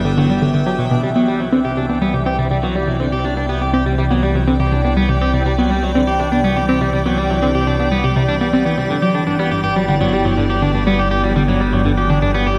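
A round, detuned analog pluck with gritty 12-bit sampler character, chorus and analog delay carries the riff in this expansive, cosmic passage of sequencer-driven ambient space music, moving at 122 BPM in straight 4/4 and tuned to A4 = 436 Hz. Alongside it, a twangy, slightly broken-up electric guitar sits up front with arpeggios through analog delay. A bright, morphing wavetable pad with phaser holds sustained chords, a fat, thick analog bass anchors the low end, and a mellow, bubbling stepped-filter texture hovers in the background, all set inside a huge ambient reverb as the harmony moves from G6 to Cadd9 at 1.0 seconds and back to G6 at 8.9 seconds.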